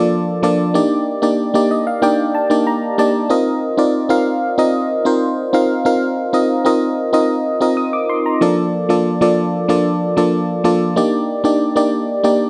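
A dry, close 1970s-style studio sound with a touch of digital ambience frames this uplifting, romantic pop passage, cut from a longer piece, in which a solo FM electric piano sits up front with a glassy, bell-like attack, a noise layer and a chorus sheen, playing a fill from 1.4 to 3.3 seconds as its decaying tones move through Bbmaj7/F, Ebmaj7 and F7sus4 before returning to Bbmaj7/F and Ebmaj7.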